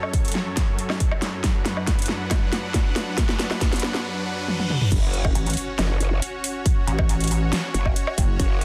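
A lush, detuned supersaw pad opens this chaotic, heavy wobble dubstep fragment, holding sustained chords in F# minor with a sidechain pumping effect while a punchy electronic kick and an up-front dubstep drum kit of huge snare, metallic hats, crash, toms and woodblock set a half-time feel at 138 BPM. The opening build-up moves from F#m to Bm/F# under drum fills, with a very quiet riser, reverse cymbal and impact adding tension from 1.6 s. At 4.9 s the drop lands on an F#5 chord with an impact, and an aggressive, growling bass enters on F#1, its formant-filtered unison tone bright, saturated and thickened with chorus and overdrive. At 5.4 s a pulsing pluck wobble bass joins between F#1 and A1, detuned and heavy with its own chorus and overdrive. Both drum parts carry a tape-warm, layered character, and the whole sits in digital ambience inside a dense, heavily limited modern master.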